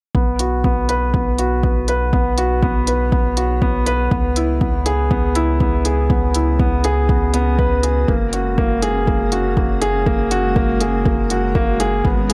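Piano and strings electronica at 121 BPM in straight 4/4, tuned to A4 = 437 Hz, this fragment of a longer piece feels moving and intimate as it moves through B, C#m7 and F#add9. An up-front, natural-sounding baby grand piano plays a short-sustained riff through a low-pass filter sweep and tape echo, over a round, dark, nasal analog bass that pumps with sidechain, a deep, layered, overdriven electronic kick, and smooth overdriven hi-hats. From 2.8 s, a cloudy, evolving granular pad fades in quietly in the background with sustained chords and its own built-in reverb, while the overall mix stays fairly dry.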